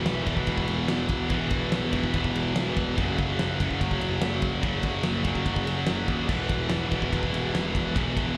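Aggressive and relentless, this short heavy metal clip, cut from a longer piece and heard live through a club PA with small-room reverb, drives a straight 4/4 groove of two bright, high-gain picked guitars, one up front with slapback echo and one in the background, moving from E5 to F#5 and back over a growly, fuzz-overdriven picked bass and a big acoustic kit with a punchy kick, fat snare and bright crash and ride cymbals that enters at 0.1 seconds.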